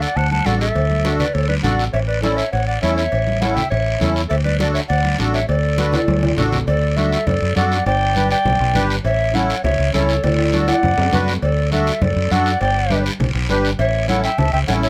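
A punchy, bright fingered electric bass sits up front in this festive, danceable cumbia in D major at 202 BPM, an excerpt cut from a longer piece. Above it, a hollow, airy tenor recorder carries the tongued melody with vibrato and chiff, a breathy jazz-style clarinet weaves a second line with scooped notes, and a reedy, sweet accordion with light tremolo tuning fills in the accompaniment. A raspy, saturated guiro runs throughout, while ringing congas and distant cowbell and timbales sit in the background, with a drum fill leading into a new section at 6.7 s and another fill arriving at 10.2 s, all in light reverb.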